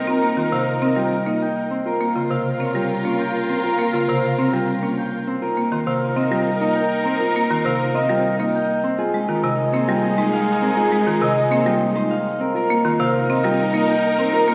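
A ringing, fingerpicked Celtic harp carries the melody up front in this meditative, hypnotic piece of minimalist classical pattern music, moving at 101 BPM in 3/4 over chords of Cm7, Gm7b5 and Fm9. A buzzing, woody marimba struck with hard mallets adds dry, percussive accompaniment from 0.1 seconds, while a dark, clean electric guitar plays arpeggios and a lush, bowed symphonic string section holds sustained chords. A mellow soprano saxophone with light vibrato traces a second line in the background, and a wet scoring-stage reverb places the ensemble further back in the room in this section cut from a longer work.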